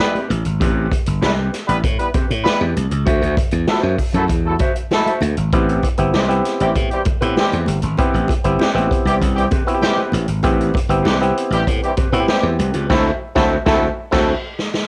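A mellow, roomy horn section and a dark, clean electric guitar with plate reverb open this hypnotic, driving funk groove at 98 BPM in A dorian, over very quiet, high-tuned congas, a distant big-band drum kit with a boomy kick, and a growly, punchy slap bass up front, all moving between Am9 and D9 with a cassette-tape grain on the horns, guitar and clav. At 5.5 seconds a twangy auto-wah clav joins with bright stabs through a combo amp. The band hits an accent at 12.9 seconds, and a drum fill closes the section at 14.1 seconds.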